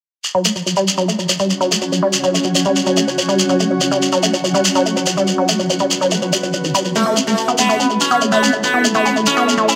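A moderate plate reverb gives this hypnotic psychedelic trance excerpt a spacious, polished sheen, with the percussion and lead parts sitting up front. A grainy, mellow shekere, compressed and saturated, drives the straight 4/4 pulse from 0.2 seconds, joined almost at once by a woody, wave-folded pluck riff in the low-middle register. That riff blends sine and sawtooth tones with a noise layer and ring modulation, its fast attack and decaying notes coloured by chorus, digital delay and a filter sweep. From 1.5 seconds a cloudy granular pad drifts in higher up, detuned and full-bodied, with a slow attack, long release and its own reverb blurring it into an evolving haze. At 7.0 seconds the harmony shifts from F#5 to A5 as a bright, buzzing sitar takes the melody, its sympathetic strings shimmering through phaser and delay.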